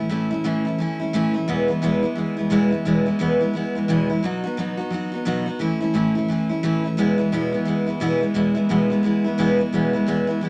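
Rock excerpt with a rollicking, rowdy mood, driving along at 174 BPM in 4/4 with a swung eighth-note feel in E major, tuned slightly below standard pitch. A single picked steel-string acoustic guitar plays alone for the whole clip, from 0.0 to 10.5 seconds, ranging from E2 up to F#4. Its jumbo-bodied tone is bright and full-bodied, sitting up front in the mix. The harmony moves from A to E, then to B, back to A and home to E at 7.0 seconds. A moderate studio reverb adds a touch of room around the guitar, and the piece is cut from a longer performance.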